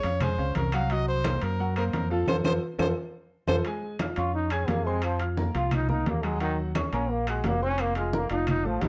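A clear, close-miked trumpet sings the melody with vibrato over a clear, long-sustaining baby grand piano, a dark, round and punchy fingered electric bass, low-tuned congas and ringing metal-shell timbales, with woody claves tucked in the background. This is a driving, danceable salsa in Bb minor at 174 BPM, with a band accent and a drum fill rounding off the opening section at 3.7 s. A breathy, intimate trombone then takes a solo from 4.2 s with light vibrato and a soft attack, all heard through moderate studio reverb and the warbly pitch drift of worn old cassette tape, in this section cut from a longer piece.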